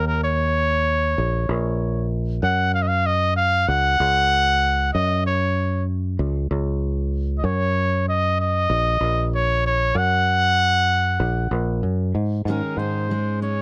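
This indie folk fragment, cut from a longer piece with a building arrangement, carries an anthemic yet nostalgic mood in a straight 4/4 feel. A clear, classical-style solo trumpet sits up front with the melody, joined from the start by a fingered electric bass that sounds growly, round and punchy. The harmony moves to Ebm7 at 7.5 seconds, and at 12.5 seconds the music turns to a new section on Absus4 as a fingerpicked steel-string dreadnought acoustic guitar enters quietly, full-bodied and warm beneath the other two. Light reverb surrounds the playing, and the sound has the worn character of old cassette tape, with a warbly pitch drift that deepens the sense of memory.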